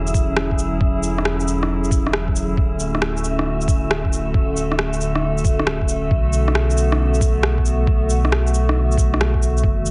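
A warbling, detuned pad drifts through sustained chords moving from E13 to Dmaj7 at 2.6 seconds and Bm7 at 6.1 seconds, its nostalgic lo-fi haze pumping with sidechain compression, while a deep, round sub bass with tube saturation breathes in the same pulse. A muffled, thumpy electronic kick and an overdriven, up-front shaker and rim click set a swung future garage groove, and an airy, wind-like tuned noise layer hovers softly above. This nocturnal, wistful excerpt sits in light reverb with a heavily compressed, radio-like sound.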